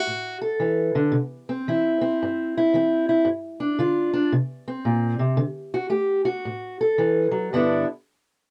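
A dry, close recording with a 1970s studio character and a touch of light reverb frames this short fragment of swaggering, laid-back blues with a swung feel. A fingerpicked steel-string acoustic guitar plays alone and up front throughout, its dark, boxy parlour tone moving through D, C, G5, Bbsus2 and back to D before settling on G6.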